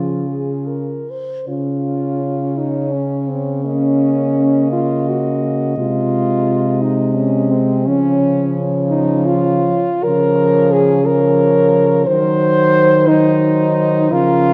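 A dark, warm recording with a moderate concert hall reverb frames this short cut from a longer classical piece for horn quartet, written in Db major and 6/8 and moving in a rubato pulse of about 48-60 BPM in dotted quarters. The mood is melancholic and yearning. A clear French horn carries the melody, sounding distant and roomy above the group, while a mellow horn with light vibrato and a smooth top sits up front on the second line. Beneath them, a dark horn with a soft attack and light vibrato supplies the accompaniment, and another mellow horn, also up front, holds the bass. All four play together from start to finish, with the harmony passing from Db through Ebm7/Db and Ab/C, returning to Db at 7.9 seconds and reaching Cdim/Eb at 12.1 seconds.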